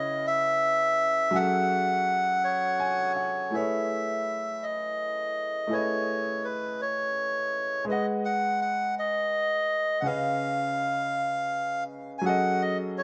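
Light reverb and a small-room ambience give this short R&B passage, cut from a longer piece, an intimate, late-night air. A reedy, breathy melodica carries the melody up front, its tone treated with a digital delay, while a grand piano with long sustain plays a close, natural-sounding accompaniment in a straight 6/8. Both parts play throughout, and the piano adds a fill from 2.4 to 3.5 seconds just before the music moves into its second section. The harmony drifts through rich seventh and ninth chords, from C#m7 and F#m9 into Amaj7, G#m7 and C#9, before resting on F#m69 at 12.2 seconds. The mood is yearning and unhurried.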